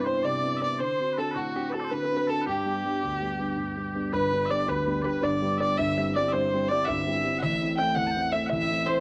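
A clear, focused fiddle with light vibrato leads a bright, rollicking Celtic slip jig in 9/8 at 109 BPM in G major, sitting up front with a cassette-tape tint, while sweet, mellow small bagpipes and a very quiet, plunky, twangy fingerpicked open-back banjo carry second lines and a dark, boxy concert grand piano with deep bass and audible action noise supports chords moving from Cmaj7 through D7 and G to C/G and Am, all in a home cassette recording with moderate spring reverb, cut from a longer piece.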